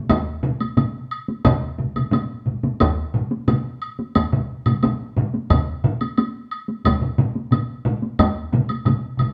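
Up-front taiko drums, struck with heavy and hard sticks, drive this ceremonial Japanese traditional ensemble piece in a straight 4/4 feel. Some drums sound close and dry, others carry a small-room ring, and one more taiko sits in the background with a live-room sound. A woody woodblock runs through the passage, which is cut from a longer piece and played live in one room with a wet studio reverb.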